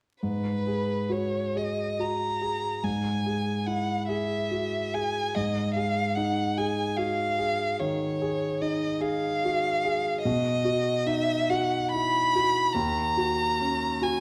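Classical impressionist duo in G# minor, hazy and wistful, drifting in rubato 12/8 at 48 BPM (dotted quarters) and tuned to A4 = 438 Hz, where an up-front, warm bowed violin sings the melody with vibrato, soft attacks, expressive portamento and a smooth top over a clear, intimate grand piano accompaniment whose natural tone carries audible action noise, the chords moving from G#m7 through Eadd9/G# and G#5 to B and D#m7, all set in a moderate recital hall reverb with vinyl crackle in this passage cut from a longer piece.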